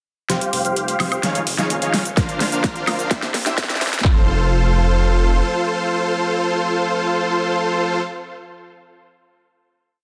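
Over a straight 4/4 pulse, this short, triumphant festival progressive house piece surges through a build and drum fill as a huge, detuned supersaw riff with tape echo, sidechain pumping and a filter sweep rides a chorused, driving eighth-note saw bass and an overdriven big-room kit of metallic hats, shaker, woodblock and a huge snare, joined at 2.2 seconds by a punchy four-on-the-floor kick and handclaps, before the supersaw holds a final F chord alone from 5.4 to 8.0 seconds in a dense, heavily limited master with light digital reverb.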